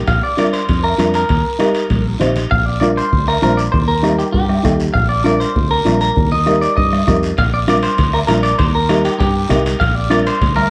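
A clean, twangy electric guitar carries the melody from the first moment, up front and compressed with a touch of spring reverb. It is joined at once by a round, foam-muted fingered electric bass, a soft-beaten bombo sounding distant in a large room, a raspy guiro and ringing metal-shell timbales. This festive, danceable cumbia fragment runs at 197 BPM in 4/4 with a straight feel in Bb major, moving back and forth between Bb and Eb. At 0.4 seconds a dark upright piano enters with mellow, woody accompaniment, slightly detuned and short in sustain, with its action noise audible. High-tuned congas played with soft hands sit in the background at the same time. A drum fill leads into the second section at 2.5 seconds, where the timbales drop out until they return at 7.4 seconds. The whole recording carries a light reverb and the worn, warbly pitch drift of old cassette tape.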